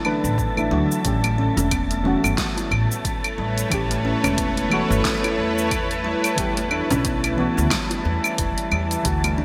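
Organic downtempo with a peaceful, unhurried swing, this short cut from a longer piece pairs a woody pizzicato upright bass, entering at 0.2 seconds, with a ringing, hollow-toned kalimba playing arpeggios through delay, over a deep house drum kit whose fat, up-front snare, cabasa, claves and hi-hat sit alongside a punchy electronic kick. Beneath them, a dark, soft chord stab with chorus and delay and a bright, tense bowed-like drone with vibrato both pulse with sidechain pumping, while a breathy, wind-like tuned noise texture hovers high above through lush chorus. The chords move from Dadd9 to A7 and then Em at 6.4 seconds, all set in a lush hall reverb with a bright 1980s-style digital sheen.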